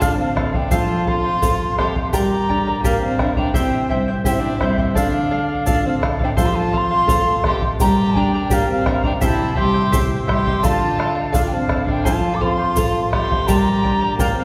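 Heard from further back in a concert hall with a long, wet reverb, this wistful, melancholic stretch of Andean folk, cut from a longer piece, sets an airy, end-blown large quena with vibrato and a soft attack over a warm, floating sul tasto violin line, shimmering fingerpicked charango, dark nylon-string guitar with a touch of finger squeak, a deep vintage bombo up front and a faint, grainy tube shaker, all cycling through Dm, F, Gm and C.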